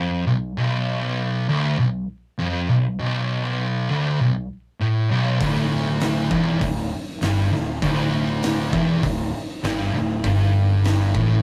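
The recording has the rough, close feel of a rehearsal room, with a short, damp booth ambience around the players. This is a heavy, sludgy stoner and doom metal excerpt at 99 BPM in B minor, in a straight 4/4. Two thick fuzz guitars open together, both picked and distorted, sitting up front with a warm, fuzzy tone as they grind through a low riff that moves from Bm to Dsus24 at 5.4 seconds and on to a rootless Emadd11 at 10.2 seconds. At 5.4 seconds a fingered electric bass enters with a bright, growly overdriven fuzz, while an oversized, low-tuned acoustic drum kit joins on kick, snare and hi-hat. The kit has a fat snare and a punchy kick in a bright, stony, pumping room sound with a saturated, gritty edge.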